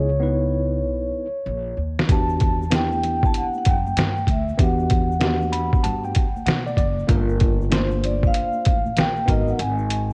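Swung sixteenths in 4/4 carry this mellow, smoky jazz-hop excerpt, where a woody, gut-strung pizzicato upright bass and a soft-mallet vibraphone melody with motor vibrato and analog delay open together over a worn, slightly out-of-tune tine electric piano with light overdrive and cassette grit, before a compressed, pitched-down, muffled sampler-style drum kit with a thumpy kick sits up front from 2.0 seconds, joined by a very quiet egg shaker and soft-handed congas, the piano taking a fill at 5.2 seconds as minor-ninth chords pass beneath a homespun cassette sheen and studio reverb.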